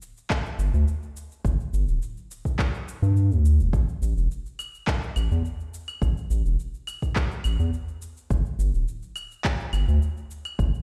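Heard through a big sound system echoing in a bare stone room, this short cut of sunny, warm sunset chillout at 105 BPM in a straight 4/4 sets a deep, overdriven electronic kick drum up front beside layered, overdriven electronic shaker, handclaps and claves, while a round, dark analog bass with a fast attack and sustained tone sits prominently from 0.6 seconds, ranging from D1 to G2.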